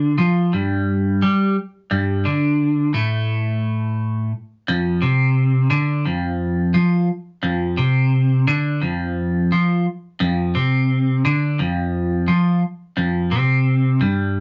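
A twelve-string electric guitar carries this short rock fragment entirely alone, its clean, picked tone bright and twangy, sitting up front in the mix. A phaser colors the jangling strings, lending the trippy, dark mood a swirling, hazy edge, while compression keeps the playing tight and even. The part stays low, ranging from F2 to G3, which gives the shimmer of the doubled strings a shadowy weight. The tempo sits at a steady 87 BPM in straight 4/4 time, unhurried and brooding. A moderate studio ambience surrounds the guitar, and the top end is rolled off above 7.5 kHz, softening its sparkle. The clip runs 14.4 seconds, cut from a longer piece.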